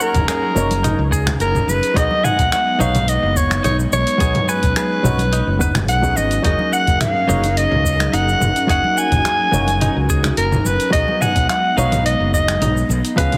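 Sunset chillout at 107 BPM in a smooth, warm mood, this excerpt sets a growling, raspy soprano saxophone up front with tape echo over a dark hollow-body jazz guitar with delay, a soft breathy pad with chorus, bright picked semi-hollow guitar arpeggios in the background, a direct fingered electric bass, a deep electronic kick, a layered deep house kit of cabasa, finger snaps, hi-hat and toms, and very quiet soft-handed congas, all moving between F#69 and B6 chords in light digital ambience with a heavily compressed radio sound.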